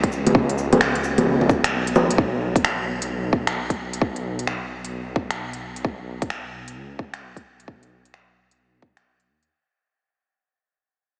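Melancholic and wistful, this short future garage excerpt moves at 131 BPM in 4/4 with a 63% swing on the sixteenths. A dark detuned saw bass rumbles low and saturated underneath, its beating sawtooth tone pumping against the sidechain while a filter sweep runs across it from 2.2 seconds onward. An electronic kick sits tight and up front, dropping out briefly from 1.7 to 2.2 seconds before returning. An organic electronic drum kit of bongos, cabasa, finger snaps and crisp hi-hats fills out the groove, both drum parts re-recorded in a large room. The whole mix is soaked in a huge ambient reverb with an 8.4-second tail, giving a dreamy yet small-speaker character as the piece fades out from 2.2 seconds to the end.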